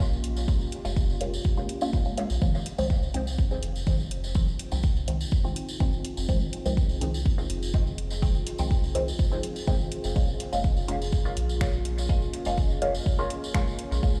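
The up-front, deep, layered electronic kick drum anchors this deep, cavernous dub techno excerpt in F minor at 124 BPM, alongside a round, soft sub bass, a muted, nasal filtered chord stab with phaser and dub echo, a moody, dark ambient pad with chorus, all three pumping to the sidechain, a jingly vintage tambourine, and a tape-warm rhythm box of finger snaps and metallic hi-hats with dub echo, all sounding as if played on a big sound system in a bare stone room while the chords move from Bbm7 to Fm7 and back to Bbm7 at 10.2 seconds.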